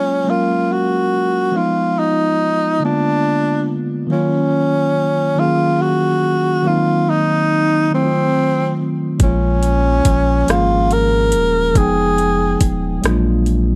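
A dry, close 1970s-style studio sound with a touch of digital ambience frames this sensual, tender slow R&B passage in 6/8 at 47 BPM, where a whispered, close-miked tenor saxophone with vibrato sings a jazz-style solo over clean, up-front tine electric piano chords moving from F#maj7 through altered dominants, until a round sine sub bass and an electronic drum kit with a knocking kick, metallic hats and rim clicks join at 9.2 seconds.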